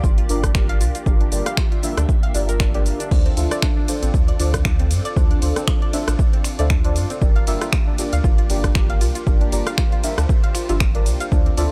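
Deep house with a hypnotic, smooth mood and a swung groove, cut from a longer piece, where a punchy, up-front electronic kick and a layered kit of hi-hat, ride, crash, rim click, finger snaps and shaker sit in a small room over a deep sub bass with octave warmed by tube saturation. Silky string machine chords hover in the background through phaser and ensemble chorus, while a soft, round pluck plays arpeggios with cassette tape colour and tape echo. Dark, detuned chord stabs with chorus, phaser and echo move through Gm7 and Dm7, with the bass, strings, pluck and stabs all pumping against the kick in a dry, gritty hardware sound.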